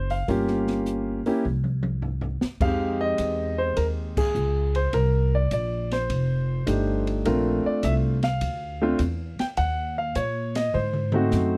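A dry, close 1970s-style studio sound frames this smoky, moody jazz piano trio excerpt in F minor at 103 BPM with a swung 4/4 feel, where an up-front concert grand with deep bass carries the melody over a woody pizzicato upright bass, while an open drum kit with dark cymbals, a high-tuned snare and a boomy kick plays fills at 1.4 and 10.7 seconds around a band accent at 4.1 seconds.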